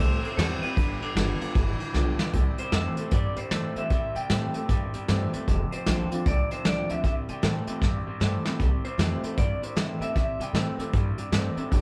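Rockabilly at 153 BPM in C major with a swung, rollicking retro feel, this brief excerpt sets two twangy, slightly broken-up electric guitars through a small old amp, one on the melody and one on a low riff, over a full-bodied picked acoustic guitar in the background, a woody, thumpy pizzicato upright bass and an up-front, muffled brush drum kit that enters at 0.2 s and plays fills at 1.9 s and 7.8 s, all captured as a band playing live in one room.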